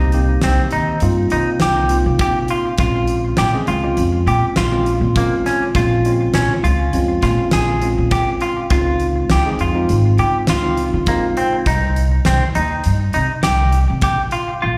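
Woody, thumpy pizzicato upright bass sits up front beside a clean tine electric piano through a combo amp with slapback echo and a bright, picked semi-hollow guitar playing arpeggios through tape and slapback echo, opening this driving, intricate progressive instrumental in a straight 5/4 at 101 BPM, as a huge arena drum kit with a fat snare and punchy kick in an airy big room joins over chords moving from Cm7 through Bbm7 and Dbmaj7 to Cm, the electric piano dropping out at 11.6 seconds, all heard as a live club gig through the venue's PA.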